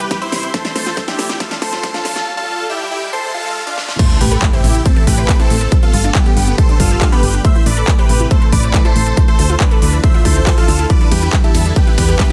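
A huge, euphoric supersaw lead, bright and detuned with phaser, pumping and digital delay, carries the soaring melody of this driving uplifting trance excerpt at 139 BPM in A minor, over a lush unison pad with chorus and a punchy unison pluck arpeggio whose filter sweeps through the build-up. A round, dark FM bass and an up-front, tape-warm electronic kick anchor the groove, while a big-room kit with a huge snare, crisp hats, claps and crashes fills the build. A very quiet riser enters at 2.1 seconds and lands on an impact as the drop hits at 4.0 seconds, moving through Am, Gadd9, Dmadd9 and Em7 in a dense, heavily limited mix with light reverb.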